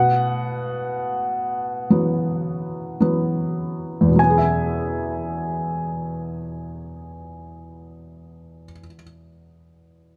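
A polished concert grand piano carries a tender, heartfelt melody between F#5 and G#5, its present tone touched by digital delay, until it stops at 8.8 seconds. Beneath it, a soft, felt-muted upright piano sits up front with a mellow, intimate, short-sustained accompaniment from E2 to E5, playing on until 10.2 seconds. This slow pop fragment in E major moves in 4/4 at 49-62 BPM, easing its pace through the opening Bsus4 before settling on Eadd9 at 4.2 seconds, all in a light reverb.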